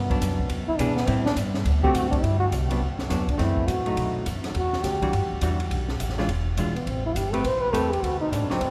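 Small-group swing and bop jazz at a brisk 207 BPM in G major, swinging and playful, with a mellow, punchy trombone taking a close-miked solo with light vibrato across the whole clip. Beneath it, a woody pizzicato upright bass, a dark, clean hollow-body electric guitar and an acoustic drum kit with a boomy kick, high-tuned snare and shadowy cymbals move through changes from E7 and Am7 to Gmaj7, Em9 and D7b9. The sound is bathed in a lush cathedral reverb with a long 6.8-second tail.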